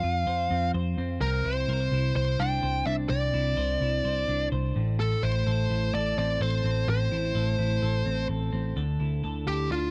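A straight 4/4 pulse drives this restless, bittersweet fragment of jangly indie pop, cut from a longer piece, where a bright, twangy twelve-string electric guitar picks arpeggios over a round, punchy, foam-muted vintage bass. Up front, a dark fuzz lead guitar carries the melody through F5, Cadd9 and Am, then the harmony turns to Dsus2 as a new section opens at 8.8 seconds. The sound is dry and close, in the manner of a 1970s studio.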